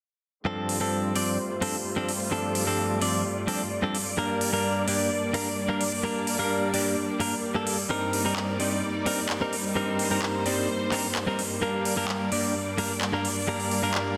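A clean, direct-recorded electric guitar anchors this festival progressive house excerpt, its picked, compressed tone sitting up front and trailed by tape echo as it carries the accompaniment from 0.5 s. Beside it, a rich symphonic string section holds sustained, bowed chords with light vibrato and a close, biting intensity, shaped by a low-pass filter sweep across the whole passage. The big-room dance drum kit arrives at 0.7 s, layered and electronic, with crisp hi-hats and handclaps punching up front with a tape-warm tone. At 129 BPM in a straight 4/4, the harmony moves through Dm7/G, Gm, Cm7/G and back to Gm, rooting the G minor mood in something anthemic and emotional. A wet recital hall reverb surrounds the parts, and the dense, heavily limited modern master keeps the sound full and forceful.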